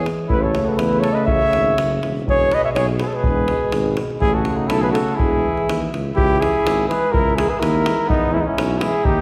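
A straight 2/4 pulse at 123 BPM drives this bittersweet, virtuosic Balkan brass band passage, cut from a longer piece, with the deep, close and dry davul joining at 0.1 s. Up front, a dark, close-miked cornet carries the melody with light vibrato in a classical style, while a clear flugelhorn shapes a second line beneath it. In the background, a mellow euphonium and trombone supply smooth-topped accompaniment, the trombone with a soft attack, and a tuba anchors the bass with light vibrato. The music sits in E major, moving between A and E chords before turning to C# dorian sharp4 at 6.2 s, where a C#m chord colors the closing bars before a return to E. The whole band rings in a wet scoring-stage reverb with a 1.8-second decay, recorded in a church or concert hall.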